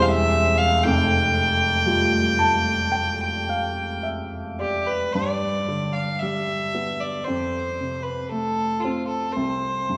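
A single bowed fiddle and an upright piano begin together on a C chord over E, opening a nostalgic, wistful Celtic slow air that moves in a free, rubato 4/4. The fiddle carries the melody with a nasal, reedy, gut-string voice, while the woody piano sits up front with it, spanning from deep bass notes to the upper register. From 1.9 to 5.1 seconds the piano plays a fill alongside the fiddle's line as the harmony rests on F with an added ninth. At 5.1 seconds a second phrase begins, moving through G and F before settling on an open C fifth. A wet church reverb with a long tail, layered over a small room's ambience, gives this brief passage, cut from a longer piece, a spacious quality.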